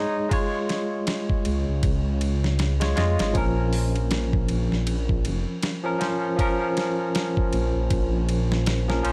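A deep, rumbling detuned saw bass enters at 1.5 seconds beneath a barky, lightly overdriven tine electric piano with harmonic tremolo and a gritty, compressed sampler-style soul drum kit with a thumpy kick, giving this short, dry trip hop excerpt a dark, cinematic, swung feel as the harmony moves from Db to Bb minor.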